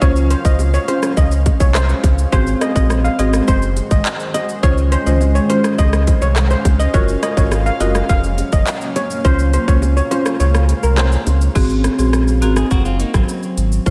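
Over a straight 104 BPM dancehall beat from an overdriven, up-front island pop drum kit with tight kick, smooth hats, handclaps, rim click, shaker and crash, a shimmering steel pan melody with diffuse ambient delay floats above pumping woody marimba, a deep sine sub bass, a blurred granular cloud pad with lush chorus, and very quiet high-tuned bongos through sunny Db major changes from Dbmaj7 to Ab7 and Gbmaj7, the kick dropping out at 10.4 seconds before a twangy clean electric guitar arpeggiates from 12.4 seconds in this dreamy, reverb-soaked summer excerpt.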